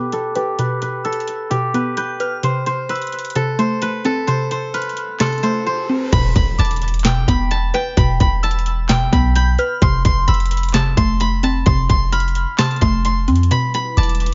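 Eerie, brooding half-time trap hip hop, cut from a longer piece, where a bright, fingerpicked steel-string zither carries the melody over a woody, round mallet-like synth pluck, both under dub echo and a filter sweep, while a crystalline synth bell hovers in the background, a trap kit with a hard-clipped kick, sharp snare and metallic hats drops out briefly as a riser builds, and an impact at 6.1 seconds brings in a deep, boomy 808-style bass up front before a short break and a faint, ethereal glass harmonica chord at 13.5 seconds, all in an echo-heavy mix.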